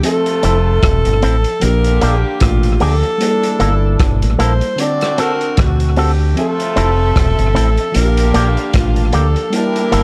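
Longing and smooth, this lovers rock reggae excerpt sways at 76 BPM in G dorian with a swung sixteenth feel, as a mellow, vibrato-laced alto saxophone carries the jazz-style melody through tape echo over a soft, round FM electric piano treated with chorus and echo, while a distant, roomy horn section hums a second line in the background. A muffled, lo-fi vintage drum kit with a punchy kick and rim click holds the groove, joined at 0.4 seconds by a deep, up-front dub bass and a dark, compressed guitar whose clean stabs pass through an envelope filter. At 6.4 seconds a rich chamber string section adds a bowed, focused line behind it all, in a dark production with light reverb over chords moving from Fmaj7 through Bb6 and Gm69 to D7.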